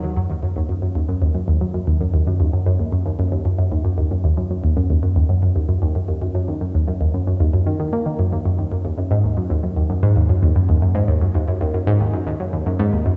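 An analog pluck, round and nasal with a sawtooth edge and a noise layer, plays alone from 0.0 to 13.1 s in this mysterious, cosmic ambient excerpt in Eb minor at 114 BPM, sitting up front with chorus, phaser, tape echo and vintage 12-bit sampler grit inside a wet echo chamber whose echo-heavy mix holds everything beneath 7.9 kHz.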